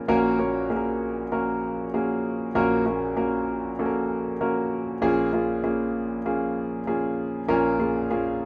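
This pop excerpt, cut from a longer piece, is an earnest, dramatic passage for solo concert grand piano at 97 BPM in a straight 4/4, tuned slightly low to A4 = 438 Hz. The piano plays alone for the full 8.5 seconds, spanning Bb1 to Db5, so its deep bass anchors the sound beneath the upper register. The harmony begins on Gb/Bb and moves to Bbm7 at 5.0 seconds. The instrument sounds clear, natural and intimate, placed up front with audible action noise. A moderate studio reverb adds some space, and the overall mix has the rough character of a home demo.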